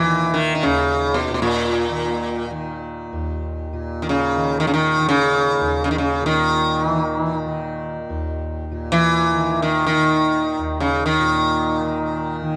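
Hindustani classical music unfolds in free time in this short excerpt, carrying a longing, introspective mood. A sitar carries the melody from 0.0 to 12.6 seconds, its plectrum-plucked tone round and buzzing, with sympathetic strings adding a shimmering halo and a tape echo trailing each phrase. Beneath it, a tanpura holds a softly plucked drone in a brighter, glinting voice, sitting well back in the mix. The sitar stays up front and dominant, its melody moving within a low register from Bb2 to Fb3, while the drone spans Eb2 to Eb3. Close, detailed microphones and light reverb give the sound an intimate presence.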